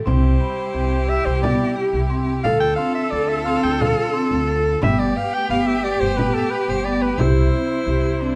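This contemporary instrumental chamber music, cut from a longer piece, moves in 7/8 at 177 BPM (eighths) in C major, tuned to A4 = 439 Hz, with a restless yet hopeful mood. A clear soprano saxophone carries the melody in a jazz style, with vibrato and scooped notes, while a smooth, even bowed cello, played by one player with light vibrato, adds a second line. A vibraphone struck with medium hard mallets spins metallic, ringing arpeggios with a fast motor vibrato and a boxy small-room tone, and a woody, growly pizzicato upright bass on steel strings sits up front. In the background, an intense bowed studio string section holds sustained chords, and a small frame drum played with soft hands sounds close and dry. The harmony moves from Cmaj7 through Dm7 and Gadd9 to C at 7.2 seconds, all set in a moderate small-room reverb.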